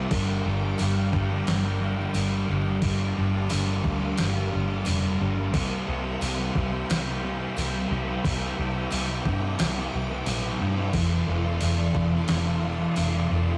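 An overdriven semi-hollow guitar riff sits up front alongside a dark fuzz guitar, a round, foam-muted electric bass and a swirling, phased string machine holding soft-edged chords in the background, opening a melancholic, dreamy slice of shoegaze-tinged dream pop. A gated 80s drum machine joins at 0.1 seconds with a thumpy kick, overdriven gated-reverb snare and crash, while a very quiet, jingly tambourine drifts in from a distance at 0.8 seconds. The chords move from Gm7 to C7 to F6, all wrapped in a wet stone-room reverb and the tube-saturated grit of a rough rehearsal-room recording.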